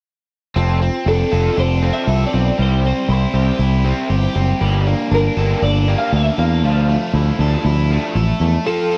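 Upbeat and wistful, this straight-feel rock excerpt at 119 BPM moves through F6, C, Gmadd9 and Dmadd9, with two overdriven guitars playing a riff from 0.6 seconds, one crunchy and touched by analog chorus, the other compressed and scooped, both carrying a cassette tape tint. A growling fingered bass, overdriven and up front, sits beneath them until 8.6 seconds, while a twangy, clean twelve-string electric guitar enters at 1.1 seconds with a melody treated with ensemble chorus. The sound is dry, a home cassette recording cut from a longer piece.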